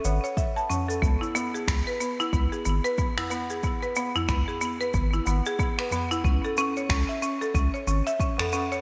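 A buzzing, woody marimba struck with hard mallets sits up front with delayed arpeggios over a round, dark analog bass with sidechain pumping in this hypnotic organic downtempo piece at 92 BPM in C# minor with a swung sixteenth feel, alongside a low-tuned, ringing tabla, an electronic shaker with finger snaps, and a deep electronic kick entering at 0.4 s, the shaker, snaps and kick all overdriven, all set in a lush hall reverb with a bright 1980s-style digital sheen.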